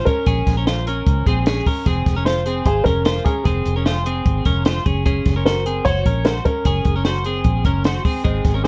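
A woody, slightly detuned upright piano with audible action noise carries the melody over clean, picked twelve-string electric guitar arpeggios in this nostalgic yet bright fragment of jangly indie pop, moving through Bbm, Fm and Gbadd9. A compact cocktail drum kit with a high-tuned snare and punchy kick joins almost at once, followed at 0.3 seconds by a round, foam-muted fingered electric bass, all framed by a dark, warm production with light reverb. At 8.2 seconds a slightly broken-up, lo-fi electric guitar through a small old amp slips in low in the mix, coloured by a phaser.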